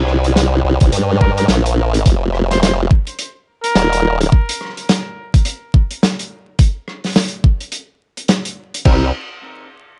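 A saturated, chorused wobble bass with a formant-filtered pulse tone opens this gritty, playful glitch hop excerpt at 106 BPM in C minor, joined up front by a muffled, lo-fi vintage kit and an overdriven, knocking electronic kick over a swung 16th-note feel. From 1.2 seconds a clear, jazz-style trumpet with light vibrato plays a solo line roughened by 12-bit sampler grit and digital delay, and once the bass drops out at 4.3 seconds the drums carry on alone over vinyl crackle. At 8.9 seconds the bass returns briefly on a Cm7, with a clean, hollow-body guitar stab pumping in the background.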